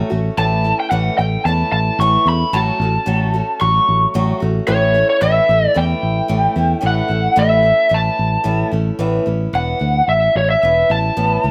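A picked, woody and boxy old acoustic guitar with slapback echo opens this jangly, nostalgic folk rock and heartland rock excerpt at 111 BPM in A mixolydian. It is joined almost at once by an up-front fingered electric bass and, from 0.4 seconds, a lo-fi, overdriven lead guitar through a small cranked amp, also carrying slapback echo, over chords moving from A to F#m/A. At 9.0 seconds the harmony shifts to Aadd9 as the lead guitar takes a short solo, all captured dry outdoors, free of any room sound.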